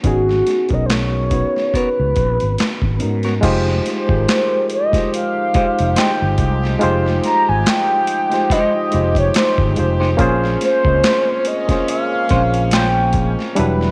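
A slow 71 BPM groove in 4/4 with a lightly swung sixteenth-note feel anchors this introspective, smooth neo-soul and R&B excerpt in F minor, cut from a longer piece. A gritty, pitched-down boom bap sampler-style kit sits up front with a thumpy kick, high-tuned snare, hi-hat, handclaps and crash, its compressed sound re-recorded in a large room, while a growly, amped fretless electric bass joins at 0.1 seconds. A reedy electric piano, lightly overdriven through its built-in speakers, carries the accompaniment from the start, and a round, horn-like synth lead with soft attack, vibrato, chorus and a filter sweep sings the melody above. A clean, fingered semi-hollow guitar drifts in the background with tape echo from 1.7 seconds, and when the harmony moves from Abm11 to Fm9 at 3.4 seconds a bright classical-style brass section enters with sustained chords and light vibrato, later shifting to Bbm9. 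Light reverb and digital ambience give the mix a gentle sense of space.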